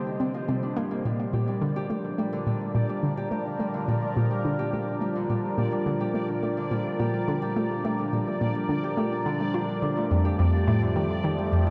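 Hypnotic and expansive, this ambient, sequencer-driven space music moves at 106 BPM in a straight 4/4, and the short cut is drawn from a longer piece. A hollow, bouncy square-wave pluck sits up front with its riff, its detuned tone edged by a noise layer and a fast, short-decaying filter pluck, colored by chorus, phaser and delay. Beside it, a sweeping resonant pad holds sustained chords from F2 to Eb5, its sawtooth and triangle waves wave-folded into a bright, evolving sound with a slow attack, filter swell and long release, treated with chorus and phaser and fading in across the full 11.7 seconds. A fingerpicked Celtic harp rings out arpeggios through delay, and a quiet bubbling texture high in the register steps its filter at random over detuned sawtooths, bathed in chorus and its own reverb. The harmony moves from Cm to Bb at 1.1 seconds and settles on Fadd9 at 10.1 seconds, all within a dark production drenched in a huge, wet ambient reverb with an 8.8-second decay.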